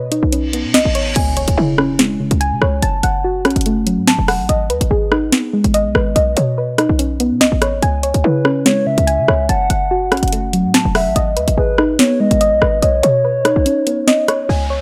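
A half-time drill groove at 144 BPM in 4/4 drives this dark, ominous hip hop excerpt in C# minor. The electronic drum kit sits up front, with a sharp snare, bright hi-hats, rim clicks and crash cymbal. A short, punchy 808-style bass with a fast attack, a decaying tail and a noisy edge anchors the low end. A soft, round pluck spins arpeggios through chorus and analog delay over a Badd9, C#m, F#m and G#m cycle. A reverse cymbal rises at 0.5 seconds into an electronic impact at 1.2 seconds, and from 8.2 seconds a hollow, woody clarinet-like synth lead adds a sustained second line with vibrato. The dry, gritty hardware sound keeps the whole track close and menacing.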